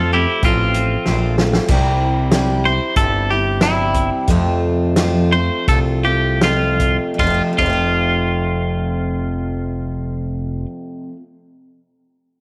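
A straight 4/4 beat from a vintage drum kit with a fat snare and punchy kick enters at 0.4 s, plays a fill and stops at 7.8 s, carrying this down-home, heartfelt honky-tonk and classic country fragment in F major at 76-95 BPM as it slows down over F and C chords, while an up-front, twangy, clean electric guitar with tape echo sings the melody, a bright dreadnought acoustic guitar with fresh strings picks the accompaniment, and a growling, thick FM bass anchors the low end, all set in light reverb.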